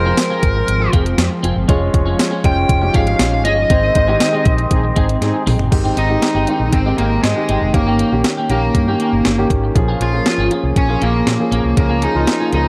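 1980s-style pop with a romantic, uplifting mood, built on an up-front, thumpy 12-bit drum machine with overdrive, a round fretless bass, an intimate concert grand with audible action noise, a twangy chorused clean guitar in the background, and a brassy, detuned analog pad that stops at 5.7 seconds, as a smooth overdriven lead guitar with digital delay carries the melody, a fat, nasal synth-brass stab lands at 4.7 seconds, and a drum fill closes the band accent before the chords move into the second section, all in a dark production with light reverb.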